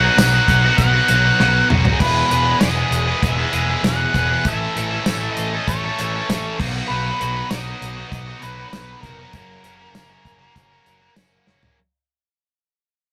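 A straight, driving 4/4 groove from a damped 70s drum kit, with its tight kick, medium-tuned snare, hi-hat, tambourine, toms, crash cymbal and fills at 1.4 and 11.5 seconds, pushes this confident classic rock excerpt as a bright, double-tracked overdriven guitar riff sits up front, a growling picked bass adds overdriven grit beneath it, and a dark octave-fuzz lead guitar carries the melody over chords moving from B through E, A and back to B before landing on F#, all in a rough rehearsal-room sound with tube saturation and a moderate booth ambience as the whole passage fades out.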